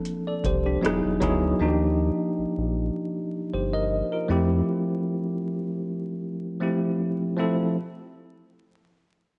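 A bell-like tine electric piano sits up front in this short excerpt cut from a longer R&B and neo-soul piece, its bright, clean tone heard through its built-in speakers as it plays from the start to 7.8 seconds over chords moving from Gm11 to Emaj9, Ebmaj9 and finally Fmaj9 in F major. The mood is soulful and sensual, with a slow 78 BPM pulse in 4/4 and a light swing on the sixteenths. A booming analog drum machine with a deep kick, metallic hats and rim click appears only briefly near the opening, stopping by 1.4 seconds. A round, dark analog bass blending sawtooth and sine tones enters at 0.4 seconds, its fast attack giving way to sustained low notes before it drops out at 4.6 seconds, leaving the electric piano alone. The whole recording carries a moderate echo chamber reverb and the worn character of old cassette tape, with vinyl crackle, warbly pitch drift and a dulled top end.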